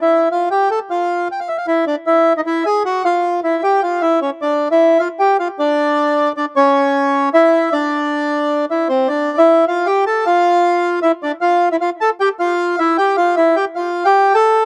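Melancholic and dramatic, this tango fragment in D minor unfolds in a rubato 3/4 at 154 BPM, with a lone bandoneon carrying the whole piece from C4 up to A5. Its reedy, dark, smooth tone sits up front, touched by a slapback echo in a dry outdoor setting, as the harmony shifts through chords like Dmadd9, C#dim and Gsus2 before settling on Fadd9 near 13.8 seconds.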